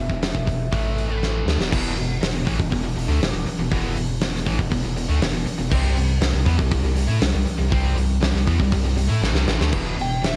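Aggressive and driving, this hard rock piece, cut from a longer work, stacks a bright high-gain guitar riff, a dark, sludgy overdriven riff and, from 1.7 s, a third double-tracked distorted riff in the background over a deep, round sub bass and an up-front big-room drum kit with a fat snare and tight kick that fills at 9.2 s, while a smooth overdriven lead guitar with cassette tape and analog delay plays briefly at the start and again at 10.0 s, the whole recorded at home on cassette with light reverb.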